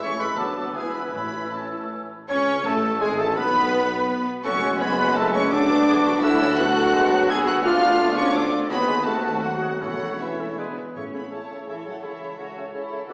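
Rubato sweeps the 3/4 pulse along at 168 BPM in this stormy, urgent excerpt from a fast, dramatic romantic orchestral movement, which settles into A major from 6.6 s. Lush, vibrato-rich violins carry the melody high above secondary lines from a second violin section, an airy flute ensemble, a solo oboe and a smooth-topped clarinet, while a dark bassoon, rich violas and very quiet French horn chords fill the middle. Cellos, woody double basses and a mellow tuba that drops out at 10.8 s anchor the bass, timpani with calf heads strike briefly near 1.1 s and again from 9.8 s, and the whole orchestra sounds distant in a reverberant recital hall through a small-speaker character.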